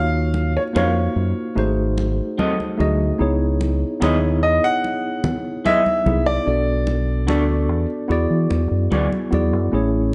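Warm and romantic, this short excerpt of lush 1970s-style soul moves at a relaxed 74 BPM in E major, with a brilliant grand piano singing the melody over a worn, slightly out-of-tune tine electric piano, a round, up-front fingered electric bass, ringing congas and a twangy, slightly broken-up electric guitar riff bathed in spring reverb, all set in a dark, warm production with moderate echo-chamber reverb as chords drift from D#m9 through C#m9 to E9.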